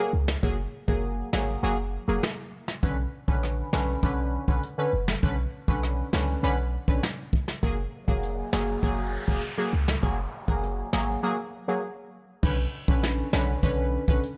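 A punchy, nasal sawtooth brass stab, bright and up front with chorus and phaser, carries the chords of this sunny, summery dancehall piece at 100 BPM in F# major, moving between F#add9 and Bmadd9. Beneath it sit a deep, dark, clean sine-like 808-style bass and a polished acoustic kit played with brushes, with dark cymbals and a boomy kick; the kick is muted from 1.6 to 2.8 seconds during the opening break. A background electronic noise sweep enters at 8.0 seconds, and the whole mix has a dry, gritty hardware character with transformer saturation.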